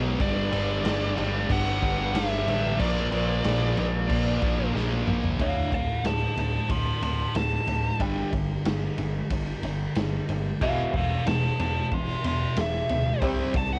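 Sludgy distorted guitar, a bright cranked stack guitar and a very quiet, scooped high-gain guitar open this anthemic, restless quiet-loud alternative rock excerpt with riffs over a round, punchy overdriven picked bass, soon joined by an up-front, gritty garage drum kit with a medium-tuned snare and a nasal lead guitar through a parked wah. After a drum fill, the scooped guitar and cranked stack guitar stop at 5.4 seconds as the lead takes a solo and a boxy fingerpicked swing-style acoustic guitar, finger squeaks audible, adds arpeggios in the background, with the cranked stack guitar returning at 10.6 seconds. Cassette tape grain colors the saturated, rolled-off drums, the acoustic and most of the electric guitars inside a moderate booth ambience on this home recording.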